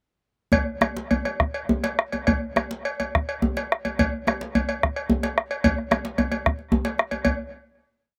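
A brisk 12/8 pulse, counted in dotted quarters and speeding up from 136 to 159 BPM, drives this short, complete West African drum ensemble piece with an earthy, festive mood. A metallic, band-limited cowbell with a vintage tinge carries the bell pattern, while a round, close bombo and a deep djembe struck with hard hands play evenly spread patterns, all three up front from 0.5 to 7.4 seconds. The outdoor sound is dry with little reverb, and the piece closes on a final hit at 7.2 seconds.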